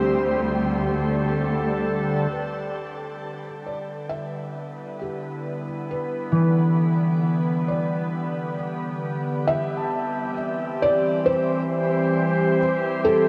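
This melancholic, reflective ambient excerpt opens on an evolving wavetable pad holding sustained chords, its slow-attack, morphing sine tone set up front with chorus and its own reverb. Beneath it, a lush bowed cello section sounds a single low note with rich vibrato. The cellos drop away at 2.3 seconds, where a felt-muted upright piano takes up a soft, dark melody touched with delay, its thick felt and audible action noise lending an intimate, vintage character; from here both piano and pad fade in. At 3.5 seconds a concert harp joins with ringing, thumb-plucked arpeggios spanning a broad range, also treated with delay, before stopping at 12.5 seconds, while the harmony moves from a suspended chord to a minor seventh and then settles on C. A wet, long-tailed shimmer reverb and a worn, warbling cassette-tape quality with drifting pitch color the whole recording.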